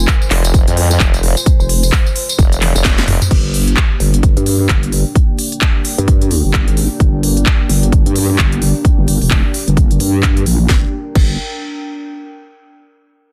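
Swaggering and gritty, this bass house cut at 130 BPM with a swung 16th-note feel opens on a drop over Fm, where a nasal, saturated vowel-sweep wobble bass and a sawtooth formant-sweep wobble bass (heard until 3.2 s) sit up front beside a punchy layered kick and a house kit of cracking snare, crisp hats, handclaps, tambourine, toms and crash; behind them, a deep, detuned analog pad and a warbling, nostalgic lo-fi tape-like pad pump in the background, a drum fill at 2.6 s leads into a long filter sweep on the wobble bass, and the harmony moves to Gm at 10.7 s in a dry, dense, heavily limited mix.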